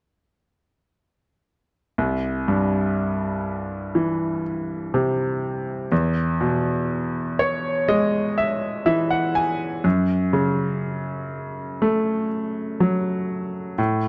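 Heartfelt, emotional pop at a slow 61 BPM in 4/4, cut from a longer piece, where a bright, brilliant grand piano sits up front with short sustain, accompanying from 2.0 seconds through C, E and F#m chords with a fill at 6.9 seconds, captured in a dry, close 1970s-style studio sound touched by studio reverb.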